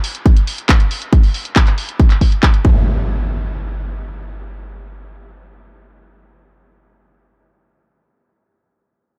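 Uplifting trance with an emotional, soaring mood and a dark, dry production: a low-pass-filtered house drum kit of handclaps and hi-hat opens under a filter sweep, a punchy, tape-warm electronic kick joins up front at 0.3 s, and the drums give way at 2.6 s to a forward electronic impact.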